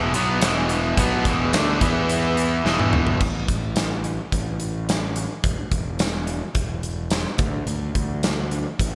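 A big arena sound fills this short classic rock clip, with a lush hall reverb giving the drums and guitars a spacious glow over a hint of small room ambience. The mood is sunny and swaggering in a straight four-beat feel, opening on a single E chord where two overdriven electric guitars play riffs: one biting, warm and up front, the other bright and carrying a slapback echo. Underneath, a very quiet vintage string machine holds silky, mellow sustained chords with a phaser and ensemble chorus, while a fuzz-driven picked bass adds a round, punchy low end. The acoustic drum kit is big and dark, with a punchy kick, a medium-tuned snare, toms, hi-hat, crash and tambourine, and a rolled-off top. A drum fill from 2.6 seconds leads to 3.2 seconds, where the guitars and strings drop out and the bass and drums carry on alone over open, chordless ground.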